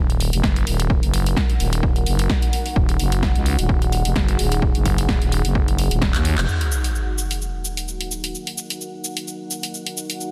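A growling, thick FM bass sits up front with sidechain pumping through this bouncy, swaggering bass house excerpt, driven by a punchy, tape-warm electronic kick and a layered house kit of handclaps, snare, shaker and warm hi-hats in studio reverb, all with a light swing. Beneath them, a deep, dark ambient pad of detuned sawtooth unison and sub octave sustains moody Eb minor chords with chorus, reverb and its own sidechain pumping. The kick drops out at 6.1 seconds for a drum fill, then the bass falls away as an electronic sub drop hits at 6.5 seconds, leaving the pad and kit in a dense, heavily limited modern master.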